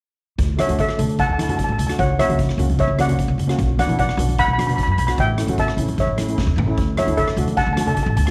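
A festive, bouncy calypso in D major moves at 150 BPM in a straight 4/4, cut from a longer piece and tuned a little flat of standard pitch. A plucked upright bass with a woody, thumpy tone and a street-band drum kit with a medium-tuned snare and boomy kick start things at 0.4 seconds, the kit sounding airy and polished. From 0.6 seconds a lead steel pan, struck with medium rubber sticks, carries the melody up front with a dark, smooth, shimmering voice, while a mellow double seconds pan played with soft rubber sticks fills in accompaniment beneath it. Low-tuned congas with a thick skin sit in the background, played with soft hands in a live-room sound. The harmony cycles through Dadd9, F#/C#, Bm and A before returning to Dadd9, and a drum fill from 6.0 to 6.8 seconds leads back into that opening chord, all set in a small room with light reverb.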